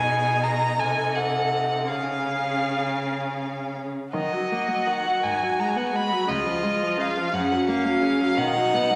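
A 6/8 pulse, pushed and pulled by rubato at roughly 53-59 BPM in dotted quarters, carries this serene excerpt of a slow romantic string quartet movement, tuned to A4 = 438 Hz. A rich, vibrato-laden first violin sings the melody up front, while a dark second violin with soft attacks and an airy bow traces an intimate inner line, the viola adds smooth, warm accompaniment, and the cello anchors the bass with even, bowed tone. All four play throughout the 9.0 seconds, bathed in a wet scoring-stage reverb, as the harmony drifts from G#m/B through a Cdim7 and C# before settling on F# and then B.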